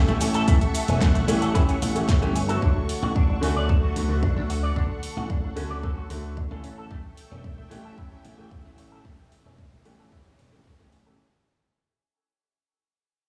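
Sunny and groovy, this short nu-disco excerpt fades out over its full 11.2 seconds, built on a punchy, up-front electronic kick and a pop kit with a fat snare, metallic hats and shaker, while a dry, foam-muted slap bass thumps beneath a twangy, envelope-filtered electric guitar riff with a filter sweep, a clear, worn baby grand piano with dub echo, and a lush, detuned sawtooth pad pumping softly through A7 and Dmaj7 chords.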